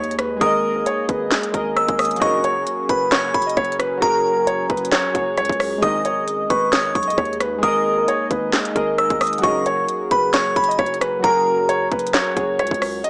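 A dark, mellow grand piano carries the melody from the first moment of this brooding, melancholic trap excerpt at 133 BPM in a half-time feel, joined by warbling, detuned lo-fi synth keys, a deep ambient pad with built-in reverb sitting in the background, a long sine-toned 808-style bass, and an up-front trap kit with a hard-clipped kick, sharp snare, crisp hats, handclaps and rim clicks. At 0.4 seconds a delicate, tinkling FM bell enters as a second line with chorus and tape echo, while a glossy, retro chorused polysynth adds brief background stabs at 2.2, 5.8 and 9.4 seconds as the harmony moves between G#sus2 and F#add9. The whole sits in a gritty, dry hardware sound with digital ambience and a small-speaker character.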